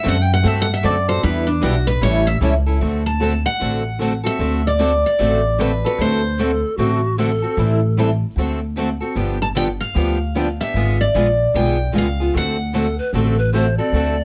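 Dry, closely miked and detailed, this playful, swinging jazz manouche clip features a bright, up-front lead steel-string guitar carrying the melody over two picked rhythm guitars, one boxy and one in the background with finger squeak, and a woody, thumpy gut-string upright bass, while a breathy bamboo pan flute with vibrato, a soft attack and chiff adds a second line at 6.4 and 12.7 seconds.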